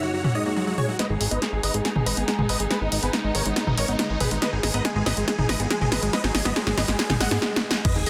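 A straight four-beat pulse drives this soaring, driving uplifting trance passage, with a punchy, tape-warm analog drum machine up front building a long fill of snare, toms, hi-hat and crash, its hats, toms and cymbals pumping against the sidechain. A huge, bright supersaw lead carries the melody through a phaser, dub echo and a low-pass filter sweep, while a clear but very quiet concert grand piano plays a second line, and a velvety, chorused synth lead adds a mellow second line for only the first 0.9 seconds. Underneath, a distant, bowed string section sustains expressive chords with vibrato, and a round analog pluck spins chorused, echoing arpeggios in the background that are also swept through a filter. A fat, saturated analog bass enters at 1.1 seconds with detuned sawtooth weight, pumping in time with the groove as the harmony moves from F# to G# minor. Very quiet swells and a riser build the tension until an electronic kick lands with a sub drop impact at 7.8 seconds, all within a dense, heavily limited mix with light reverb, cut from a longer piece.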